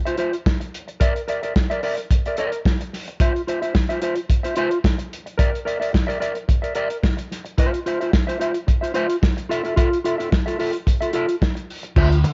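Dark, warm production with a light studio reverb gives this short disco excerpt a cozy, close sound with the top end trimmed off. At 110 BPM in a straight 4/4 in F major, the mood is glamorous and celebratory. A mellow, clean electric guitar plays fingered accompaniment through an analog chorus, sitting up front and moving between Cadd11/F and Bb before settling on Fmaj7 near 9.5 seconds. A soul drum kit with a small-room feel carries the groove throughout, its gritty, saturated, muffled character heard in a tight kick, medium-tuned snare, hi-hat and dark crash cymbal. Only at 12.0 seconds does a hollow-body short-scale electric bass enter, fingered, round and amped, arriving just as the cut ends.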